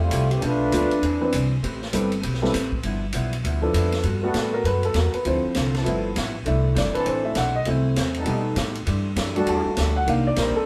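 Swung eighths drive this energetic big band jazz fragment, where a tight, up-front trombone section with vibrato opens the solo spot before a natural-sounding baby grand piano takes over from 4.0 s above smooth-topped trombone chords arriving at 4.2 s, supported by a woody, thumpy pizzicato upright bass, a dark, compressed hollow-body electric guitar in the background, and an acoustic drum kit with a punchy kick and ride cymbal, the band heard playing live together in a moderate studio reverb.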